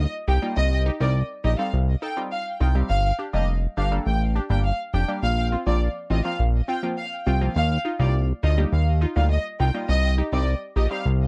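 A fat, saturated analog bass sits up front through this tough, sultry dancehall fragment, joined at 0.3 seconds by a glassy, crystalline wavetable pluck treated with chorus and phaser, while a lush, bowed studio violin section carries the melody with vibrato and digital delay, all in a dark, dry mix that moves from Ebadd9 through Cm, Gm and Bbsus2.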